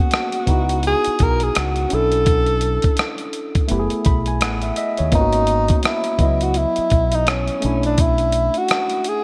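A swung 84 BPM groove in 4/4 drives this sultry, introspective R&B and neo-soul clip, with a gritty, compressed sampler-style kit of thumpy kick, hi-hat and rim click sitting up front in gated reverb, and a round, punchy fingered electric bass entering at 0.5 s and dropping out at 8.5 s. Over chords moving from C#m11 through Bm11, F#m11 and G#m11, a barky, lightly overdriven tine electric piano comps through a combo amp and adds a fill between 3.7 and 5.1 seconds. A mellow, breathy tenor saxophone carries the solo melody with subtone, vibrato and scooped notes, all set in a plate reverb and a bright 1980s-style digital production.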